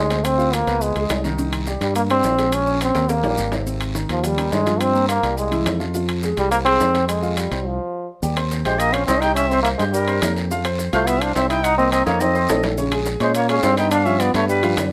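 Fiery and sultry, this fragment of a longer Afro-Cuban jazz piece in F minor drives along at 210 BPM, with a clear, vintage-toned trombone carrying the melody up front, bathed in plate reverb, over a warm baby grand piano and a punchy, bright fingered electric bass. Ringing metal-shell timbales, a raspy guiro and grainy maracas sit close behind, with drum fills falling on each side of a brief stop at 7.7 s. At 8.6 s a breathy, reedy jazz flute enters as a second line with vibrato and a tongued chiff, lifting the closing stretch.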